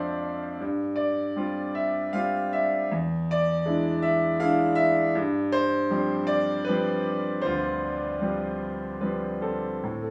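In a rubato 3/4 at roughly 73-81 BPM, this wistful, dark excerpt from a longer classical piece features a lone, brilliant concert grand piano with deep bass, open, long sustain and an up-front presence, spanning D2 to F5 through Dm7/F, G7sus4 and E7 harmonies in a small room with light reverb for 10.1 seconds.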